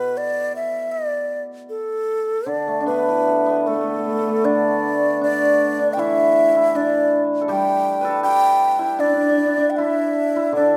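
Close, detailed microphones in a moderately reverberant recital hall give this short cut from a longer Chinese traditional chamber piece a clear, intimate sound with a gentle 1.6-second tail. The mood is pastoral and graceful, moving at a rubato 78 BPM in 2/4 within the D zhi mode. Up front, an end-blown bamboo xiao carries the melody with an airy, bright tone, a crisp attack and vibrato. Beneath it, a hammered dulcimer, also placed near the listener, supplies a shimmering accompaniment in its lower and middle range. At 2.8 seconds a second hammered dulcimer joins with its own ringing line, and at 4.0 seconds the music moves into a new section that continues until the recording ends at 10.8 seconds.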